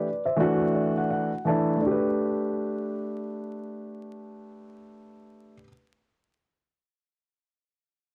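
Hip hop with a smoky, cool mood at 82 BPM, this short fragment rides a swung 16th-note feel as a dark, mellow grand piano plays from 0.0 to 5.7 seconds. The piano sits up front with an intimate, vintage character and audible action noise, its cassette tape treatment lending a smooth finish as a fill runs from 0.4 to 1.8 seconds over a D chord before moving to G. A moderate booth ambience and vinyl crackle give the whole recording a homemade cassette quality.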